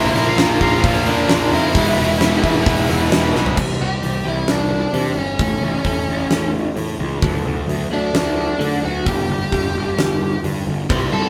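Quiet-loud alternative rock in a cathartic, restless mood, cut from a longer piece and played by a band live in one room with moderate reverb. A dark, smooth lead guitar sings the melody up front throughout, over a growly fuzz bass and a huge arena drum kit with a fat snare and punchy kick, while a double-tracked high-gain guitar, a bright overdriven electric guitar and a hollow-body semi-hollow guitar grind out a riff in the background beneath a barely audible swirling, phased vintage string machine. After a drum fill at 3.3 seconds the band drops into half time at 3.6 seconds, the heavy riffing falls away and a clean, compressed, twangy twelve-string electric guitar takes over with arpeggios.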